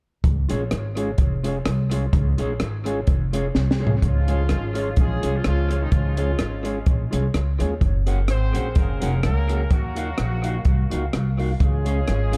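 Joyful and cheerful, this ska excerpt moves at 127 BPM in 4/4 with a light swing on the eighth notes, set in D-flat major. A compact cocktail drum kit sits up front with a punchy kick, a high-tuned snare, rim clicks, hi-hat and toms, its top end rolled off, while a woody, thumpy upright bass with gut strings is plucked alongside it. A mellow electric guitar, clean and fingered, adds accompaniment bathed in spring reverb and dub echo, and a round tonewheel organ plays stabs through a slow rotary speaker. After a drum fill from 3.5 to 4.0 seconds, a clear, vintage-sounding horn section enters with the melody, voiced in octaves with a light vibrato and its own dub echo. The chords move from D-flat through Gbadd9 and Ebmadd9 before returning home, all within a dark production that keeps reverb to a minimum.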